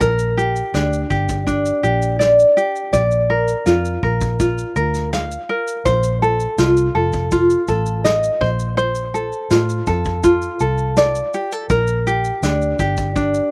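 A dry acoustic pop excerpt with an easy-going, heartfelt mood, built around an up-front fingerpicked tenor ukulele accompaniment with a light touch and slapback echo, underpinned by a dark, round, foam-muted electric bass with a punchy edge and a distant, roomy brush kit of tight kick, snare and shaker, all moving through a gentle progression from Gm to Bb, F7 and Dm7/Bb before settling back on Gm.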